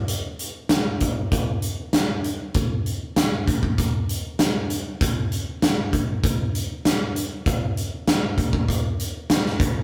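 A big acoustic rock drum kit carries this short cut from a longer rock piece, playing hi-hat, kick drum and snare drum from 0.1 to 9.7 seconds. The punchy kick and medium-tuned snare sit up front, with the natural sound of a big room around them. The tempo is 98 BPM in 4/4 with a straight feel, and the mood is cathartic and angsty. Light reverb and warm saturation give it the rough character of a rehearsal-room recording.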